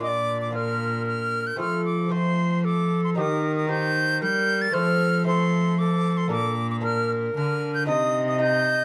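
An airy silver concert flute carries the melody up front in this festive, courtly Renaissance-style consort dance in triple time, its metal tone shaped by gentle vibrato and a soft attack high in its range. Beneath it, a tenor recorder plays a second line from a more distant position, its pure wooden straight tone touched by a slight chiff at the start of notes. A single bowed cello supplies a rich, reedy gut-string bass in period style, close and prominent. The lute fills in the accompaniment, fingerpicked and delicate, with doubled gut strings, some of them octave-doubled. Over this 8.8-second fragment the harmony moves from Bb through F, Eb and F again, returns to Bb, and lands on Cm, with all four parts sounding from start to finish. Light reverb and close, detailed microphones keep each line distinct.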